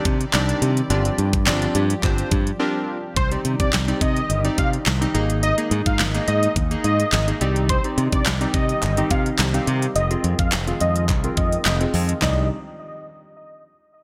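Dance-pop at 106 BPM in C minor, confident and driving, this excerpt rides on an up-front pop drum kit with a knocking kick, fat snare under gated reverb and crisp hats, alongside a punchy, bright fingered electric bass and detuned analog keys with sidechain pumping and chorus over a very quiet, evolving sawtooth pad. A group handclap sits hollow in the background from 0.3 to 2.2 seconds and returns at 8.3 seconds, and after a brief break a thick, nasal unison lead with vibrato and delay takes the melody at 3.2 seconds as a filter sweep runs until 12.2 seconds. Chords move from Cmadd9 through Absus2 and Fm7, framed by bright 1980s-style digital production with light reverb.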